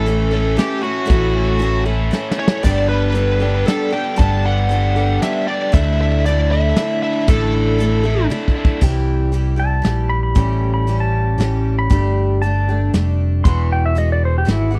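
A smooth, overdriven lead guitar carries the melody up front at the start of this hopeful, open-road folk rock and heartland rock passage, bright and picked, before it stops at 8.3 seconds. Set in A mixolydian at 117 BPM in a straight 3/4, it rides on a shimmering, octave-doubled twelve-string acoustic guitar with a woody tone from old strings, and a double-tracked, scooped electric guitar riff that drops out once the first section ends. A round, amped electric bass and a soft brush drum kit with a punchy kick and medium-tuned snare sit up front throughout, with drum fills marking the turns into new phrases. From 9.6 seconds a clean, twangy pedal steel guitar takes a solo over chords moving from C through A7 and Gsus2 to Eadd9, played with fingerpicks and slide, compressed, with volume swells. The sound is a dry, close 1970s-style studio recording with little reverb, and the passage is cut from a longer piece.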